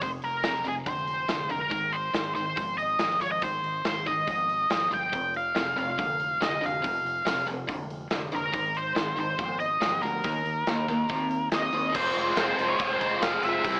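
An up-front octave-fuzz lead guitar, dark and distorted with wah, carries the melody from the first moment of this gritty, driving classic rock excerpt in F minor at 141 BPM in a straight 4/4. Beneath it, a tight, bright distorted guitar picks a riff over a growling fingered electric bass with overdrive, while a big acoustic rock kit with a punchy kick, medium-tuned snare, hi-hat and bright crash cymbals pushes everything forward. At 5.1 seconds a raw, lo-fi garage guitar joins with its own overdriven, phaser-tinged riff, thickening the power-chord movement between F5, Ab and Eb5. Around 12.0 seconds the music shifts onto an F minor chord as a slow-rotary tonewheel organ with key click and a grainy egg shaker slip in, both barely audible. The whole mix sits in light reverb with a boxy AM radio character, and the piece is cut from a longer work.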